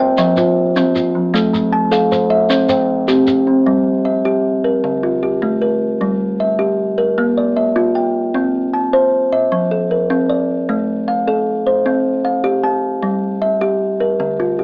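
A bright, woody kalimba sits close and up front, ringing out dry, full arpeggios from the thumbnail pluck across the whole 14.6 seconds of this cut from a longer piece. It carries a southern African traditional, mbira-style interlocking cycle in 12/8 at 102 BPM, counted in dotted quarters, with a straight feel in G equiheptatonic tuning. A second kalimba, darker and smoother with a hollow-box thumb pluck, adds its own arpeggios until 4.1 seconds, and a grainy, mellow shekere plays close and dry from the opening moments until 3.5 seconds. The mood is warm and rippling, moving through chords such as Am, C, Gm, Dm, Bb and F. The sound is that of a worn, warbling old cassette with pitch drift and an AM-radio quality, set in a modest small-room ambience.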